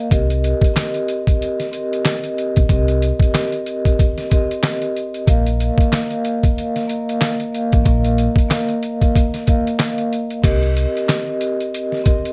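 Boom-bap hip-hop in C minor at 93 BPM with a swung 16th-note feel, this gritty, moody cut pairs a compressed, pitched-down sampler-style drum kit, thumpy kick, medium-tuned snare, hi-hat, handclaps and crash, sitting up front, with a round, punchy fingered electric bass that stops at 10.9 seconds. Soft-mallet vibraphone rings with a slow motor vibrato, mellow and band-limited, over chords moving from Cm7 to Bbsus4 and back to Cm7 at 10.4 seconds. The dry, dark production carries a faint mains hum, and the recording is cut from a longer piece.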